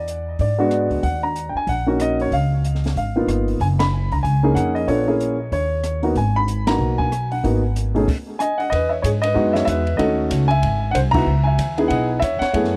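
An upright piano and pizzicato upright bass open this cool, swinging jazz piano trio excerpt together, with the drums joining a moment later at 0.1 seconds. The tempo is a brisk 188 BPM in 4/4, with a light swing on the eighth notes, and the music sits in G# minor. The up-front piano carries the melody with a woody tone and a touch of tape echo. Beneath it, the steel-strung bass sounds woody, warm and up front. The open kit of dark cymbals, a high-tuned snare and a boomy kick sits further back in a studio room. The band hits shared accents and then stops completely from 8.1 to 8.7 seconds, before a new section moves through rich extended chords such as Emaj9 and G#7b13. The whole recording is dry and close, with a 1970s studio character.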